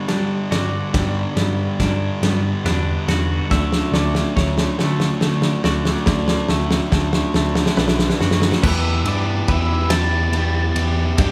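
A brooding post-rock passage in a straight 6/8 opens with a phased, twangy electric guitar and a bright twelve-string tucked in the background weaving arpeggios over a thick fuzz guitar riff, while a warm tine electric piano carries the bass and a loose indie drum kit with a fat snare and tight kick sits up front, building and filling through the first 8.6 seconds. At that point the music lands cathartically on E minor as a bright distorted guitar takes over the riff and a dark octave-fuzz lead guitar enters with a high melody at 8.7 seconds, the twelve-string dropping out at 10.8 seconds. The band sounds captured live together in one room with light reverb, and the piece is cut from a longer work.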